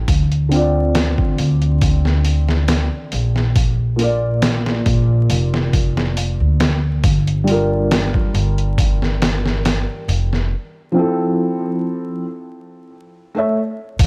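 A felt-muted upright piano, soft and intimate with harmonic tremolo, 12-bit sampler grit, tape echo and a filter sweep, opens this dark, melancholic trip hop excerpt at 69 BPM in D minor alongside a woody pizzicato upright bass with tube saturation, while a compressed, pitched-down, overdriven sampler-style drum kit with a thumpy kick, medium-tuned snare and hi-hat drives a gently swung groove through Dm7, Bb and Gm7 before a break at 10.5 seconds moves to Fmaj7 and A, all set in a small room under vinyl crackle.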